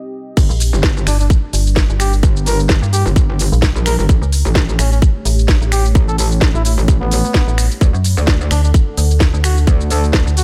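Bass house at 129 BPM in G harmonic minor, aggressive and bouncy with a swung sixteenth-note feel, it opens on a deep, moody detuned pad that sits in the background before the drop lands at 0.4 seconds over a Gm, A7, D progression. An up-front, tight, tape-warm electronic kick and a garage kit of cracking snare, crisp hi-hats, shaker, finger snaps and crash cymbal drive the groove. A metallic, overdriven wobble bass and a dark, decaying FM bass pump against the kick, while a veiled trumpet with a bucket mute enters at 1.1 seconds, playing a mellow, pop-style solo line with scooped notes and delay.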